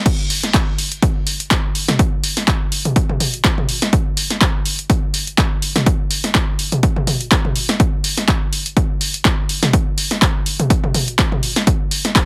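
A 124 BPM house groove with a 55% swing on the 16ths drives this raw excerpt, cut from a longer piece and sitting in a drop from 0.1 to 12.3 s. An overdriven, punchy analog kick, re-recorded in a large room, sits up front beside a punchy analog drum machine supplying crash cymbal, handclaps, hi-hat, snare and toms, its tape-warm snare, clap and hats carrying a short small-room tail. The sound is dry and heavily compressed, with a radio-like squash that keeps the drums punchy and insistent.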